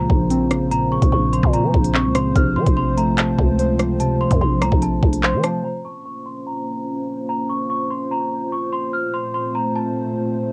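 A cold, ominous drill beat opens with a delicate, bell-like celesta melody set high over muted, intimate synth keys and a deep, detuned analog pad holding moody chords, all softened by a home cassette recording in a light reverb. A growling, buzzy 808-style bass and an electronic drill kit sit up front from the first moments, the knocking kick, crisp hats, handclaps and rim clicks driving a half-time feel. The harmony moves between Bbmadd9 and F/Bb, giving the piece a shadowy minor cast. At 5.6 seconds the drums, bass and keys fall away, leaving the sweet, bright celesta and the slow, wave-folded pad alone under a filter sweep until the fragment ends at 10.5 seconds.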